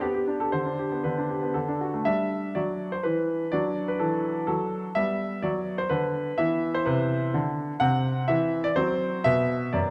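Playful and graceful, this short passage cut from a longer classical-period piano sonatina moves in a lilting 3/4 at 125 BPM, its rubato feel letting the phrasing breathe freely in G major. A bright concert grand piano plays alone from start to finish, spanning F#2 to F#5 with a brilliant, slightly worn tone, a deep bass and a present, up-front placement. The opening phrase settles through G/B, G/D and D before a new section begins at 2.1 seconds, where the harmony sways between G and D, then turns toward E5 and C. A brief break in the harmony at 8.8 seconds gives way to a closing B5 chord. The recital hall reverb is wet, with a long 1.8-second tail, and the overall production leans dark and warm, framing the sparkle of the instrument in a soft glow.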